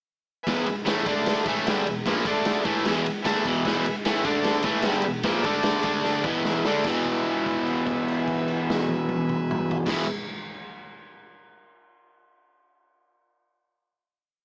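A buzzy vintage combo organ opens at 0.4 s with light vibrato, holding clean triad chords in quarters in the background. Almost at once a bright, crunchy overdriven electric guitar, double-tracked and up front, drives a picked power-chord riff over a raw acoustic drum kit with a punchy kick, a rolled-off top and a garage stomp groove, all at a swaggering 149 BPM in E mixolydian. After a drum fill at 6.1 s, the short garage rock piece lands on a final chord held from 6.9 s to about 9.9 s, with light reverb and a small speaker sound.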